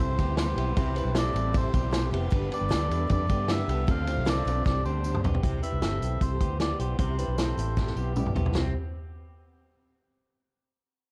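A reedy, breathy melodica carries the tune of this breezy, youthful stretch of jangly indie pop, its nasal plastic-case tone touched with slapback echo. Beneath it, a round, foam-muted electric bass and a punchy vintage drum kit sit up front, the kit's dark cymbals and medium-tuned snare giving the straight 4/4 groove a rolled-off, mid-forward weight, with drum fills at 4.7 and 7.8 seconds. A twangy, slightly broken-up electric guitar through a small old amp plays arpeggios bathed in spring reverb, while a shimmering, octave-doubled twelve-string acoustic guitar adds very quiet picked jangle, finger squeak included. A mellow, overdriven combo organ with light vibrato and a jingly tambourine stay in the background, and a very quiet bowed string section lends smooth, expressive sustained chords with portamento until 5.4 seconds. The chords move from C through G and Dm7 to Csus2 before settling back on C, and the dark, close production keeps reverb to a minimum on this excerpt cut from a longer piece.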